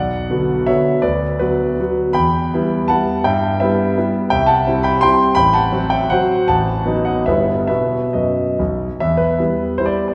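Capricious and wistful, this short cut from a longer classical piece is a romantic dance in triple time for solo piano, its dotted rhythms moving with a free, rubato feel somewhere between 127 and 177 BPM. A concert grand carries everything alone from 0.0 to 10.1 seconds, sounding natural and up front with a deep bass, ranging from G1 up to C6. The harmony leans from B minor toward E minor, passing through C major, a diminished chord and a B7 before arriving on B and settling into E minor at 9.0 seconds, where a new section begins. A generous concert hall reverb with a 2.4-second decay surrounds the piano, heard from further back in the room, lending the dance a spacious, lingering glow.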